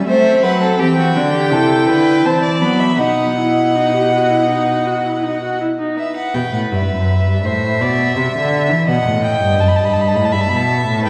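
An up-front cello with expressive portamento and vibrato anchors this solemn, driving baroque-style fugue for string quartet in E minor at 82 BPM, a passage cut from a longer piece. Above it, a focused, smooth-topped violin carries the melody while a second, even-toned violin plays a lower line, and a warm, expressive viola adds accompaniment until it stops at 6.0 s, when the harmony arrives on E minor. The bowed strings sit in a reverberant concert hall, heard from further back in the room.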